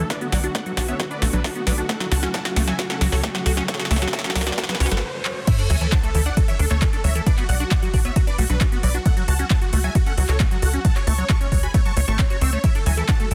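Emotional and bittersweet, this uplifting trance passage is cut from a longer piece and moves on a straight four-beat pulse, building up for its first 5.5 seconds before the drop hits. A huge, thick supersaw carries the melody throughout, its detuned unison layers given an airy noise edge, vibrato, a low-pass filter, digital delay and sidechain pumping. Beneath it, a squelchy, resonant acid bass runs arpeggios with chorus and dub echo, while a tight, driving sequencer bass with a filter pluck sits up front alongside a punchy, tape-warm electronic kick. A lush, warbling vintage pad holds sustained chords in the background during the build and returns briefly at 12.6 seconds, and a very quiet riser and sub drop sweep through the build into the impact. The big-room drum kit brings a punchy snare, crisp hats, handclaps, ride and crash, with a fill leading to a short stop before the drop, where a punchy supersaw stab enters at 5.5 seconds as a second line with dub echo. 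The mix is dry and dense, with a heavily limited modern master.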